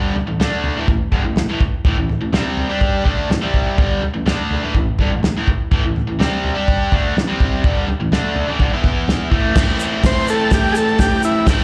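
A straight 4/4 pulse at 124 BPM drives this gritty, swaggering garage rock clip in A minor, cut from a longer piece. A crunchy electric guitar opens at 0.0 s with a picked, double-tracked riff that sits up front, bright and overdriven, ranging from G2 to G4 over Am before brief E5 and A5 chords. The cloth-damped acoustic drum kit joins almost at once, thuddy and rolled-off in a small-room sound, with a tight kick, medium-tuned snare, dark cymbals, hi-hat, crash and toms. At 9.6 s the music moves into a new section back on Am, and a grainy egg shaker slips in behind the band. At 10.1 s a vintage combo organ takes the melody between E4 and C5, buzzy and clean with light vibrato and a slapback echo. The recording sounds like a live gig heard through the venue's PA, with club reverb and a touch of studio reverb.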